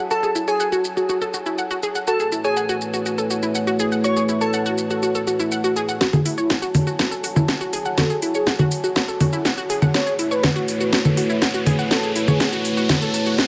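A straight house kit of congas, shaker, metallic hi-hats and a cracking snare sits up front in this dark, cinematic melodic techno excerpt, while a deep, moody analog pad holds sustained chords under a filter sweep, a lush, detuned unison pluck pumps out arpeggios with delay, a smooth synth lead with vibrato sings a mellow melody in the background, and a glassy, crystalline wavetable pluck adds a faint second line until 4.6 s, before a punchy electronic kick arrives at 6.0 s to drive the build-up and a riser climbs from 8.8 s, all bathed in a huge ambient reverb.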